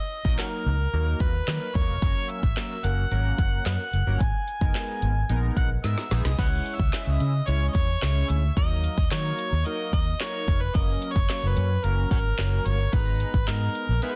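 Driving, energetic dance-pop excerpt led by a gritty, overdriven harmonica with tape echo, light vibrato, tongue slaps and scooped notes, over a glossy, chorused polysynth and a round, foam-muted vintage bass that both pump with the sidechain, while an up-front deep house kit of deep kick, woody snare, dark hats, handclaps and crash adds a fill from 5.8 to 6.4 seconds, all in a dense, dry, heavily limited mix.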